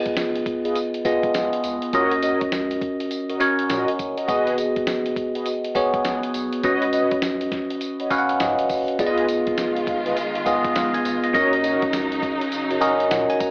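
This R&B excerpt in a new jack swing style has a bouncy, punchy mood, with a swung sixteenth-note feel in 4/4. A bright, bell-like tine electric piano with a phaser sits up front and carries the accompaniment, adding short fills at 7.8 and 12.5 seconds. Beneath it, a gritty, compressed sampler-style kit of hi-hat, thumpy kick, snare and tambourine sounds dusty and re-recorded in a large room. A deep, nasal analog bass stays in the background. Mellow, detuned synth brass stabs with chorus and analog delay add a round, brassy color, and a lush bowed string section enters at 9.0 seconds with smooth, expressive sustained chords over the minor-key harmony. Light reverb and a cassette-tape, AM-radio character give the whole mix a lo-fi, vintage haze.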